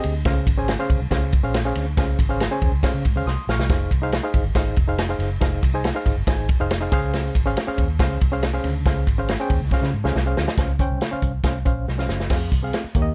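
A driving 140 BPM straight four-four groove from an up-front vintage drum kit with punchy kick, medium-tuned snare, hi-hat, ride and crash, with fills at 3.3, 9.7 and 11.9 seconds, carries this uplifting, joyful 1960s-style soul excerpt, where a dark, round, foam-muted fingered electric bass holds the low end and a barky, reedy electric piano, lightly overdriven with fast tremolo, comps through Dbmaj7 and Fm7 changes in a dry, natural small-room sound.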